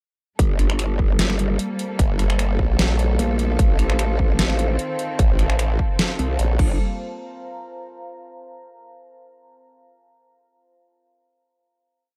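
Heavy wobble dubstep at 150 BPM in a half-time G minor feel, this chaotic, weighty piece drops straight in at 0.4 seconds with a punchy overdriven electronic kick and a dubstep kit of deep snare, metallic closed hats, finger snaps and crash, both re-recorded in a small room. Up front, an aggressive, saturated growl bass and a sawtooth formant-sweep wobble bass, which joins at 2.0 seconds and answers it, trade modulated phrases with changing wobble speed. Beneath them a woody studio string section holds softly bowed, pumping chords with light vibrato, while a moody, detuned, warbling vintage pad with a sub octave rises in at 1.7 seconds and rings on alone through the final note, all in a dark, dry production.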